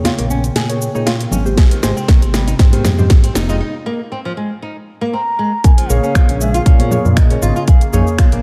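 This hypnotic, earthy afro house fragment opens on a detuned, chorused analog pad, fingerpicked flamenco guitar arpeggios through tape echo, dark, nasal chord stabs and soft-handed, ringing congas, with the pad, guitar, stabs and a saturated, ring-modulated synth bass all pumping to the sidechain, while a layered house kit of cracking snare, finger snaps, hi-hat, shaker and toms drives a build-up fill, a punchy, up-front electronic kick arrives at 1.6 s, and a breathy bamboo bansuri floats in at 5.1 s just before the drop at 5.6 s, all under a light reverb, with both drum parts re-recorded in a large room.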